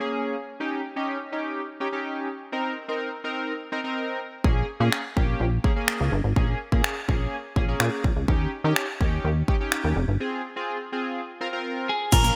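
Dance-pop in Bb dorian at 125 BPM, this bittersweet, energetic excerpt opens with a glossy, retro chorused polysynth holding sustained chords with sidechain pumping, moving through Bbm7, Eb7 and Cm7. At 4.4 seconds a plucky analog bass with a funky sawtooth-and-square bite arrives up front, pumping along with the synth, while a punchy, layered pop drum kit enters with kick drum, hi-hat, finger snaps and crash cymbal dressed in gated reverb. The harmony settles on Eb7 and then Ab6 for a break from 10.2 seconds. Just before the cut, an electric guitar at the edge of break-up adds a short picked, compressed melody between Ab4 and Bb4 from 11.9 seconds. In the final moments a very quiet, woody FM mallet-like pluck traces brief arpeggios and a grainy tube shaker sprinkles in, all within a bright 1980s-style digital production and light reverb.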